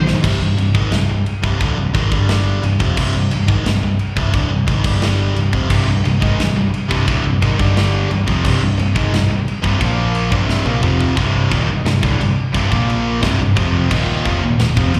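Heavy metal in a relentless, heavy mood, this straight-feel clip cut from a longer piece pairs an up-front high-gain distorted guitar riff with a second heavy high-gain guitar set in the background, which drops away after a brief opening stab and returns at 5.7 seconds, both carrying distortion and a slapback echo over a growly, foam-muted overdriven bass. A tight metal drum kit with bright cymbals, a medium-tuned snare and a tight kick, including china and crash cymbals and toms, sounds in a big room, with fills at 0.1 seconds and again just before the second section at 11.2 seconds. The chords cycle around C minor with G5 power chords before moving through Bb5, C5, F5 and finally Eb5, all heard as a live gig through the venue's PA with recital hall reverb.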